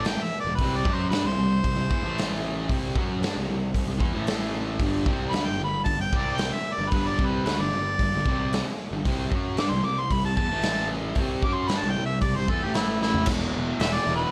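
A straight 4/4 pulse at 114 BPM drives this gritty, menacing garage rock fragment, with a raw acoustic drum kit, saturated and set up front with a punchy kick and medium-tuned snare, hitting crash, hi-hat and toms before a drum fill at 13.0 seconds. A double-tracked fuzz guitar grinds out a distorted picked riff over power chords on E, C, A and G, while a growly overdriven picked bass digs in underneath. Up front, a warm, smooth-topped harmonica with overdrive carries the melody high above, all under a light reverb in a brief cut from a longer piece.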